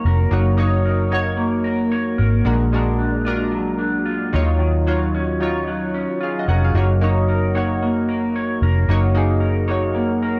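Indie pop at 112 BPM in F# major, with a light 16th-note swing giving this nostalgic, sunny excerpt an easy lilt over chords moving from F#6 to A#7b13 at 2.5 seconds and D#m9 at 4.3 seconds. A foam-muted fingered electric bass sits round and punchy beneath a twangy, slightly broken-up guitar through a small old amp, its picked tone bathed in lush chorus, vibrato and plate reverb. Chorused retro synth keys add glossy, evolving pulse-wave and sawtooth colour with filter sweeps, all in a dark, warm small-room production.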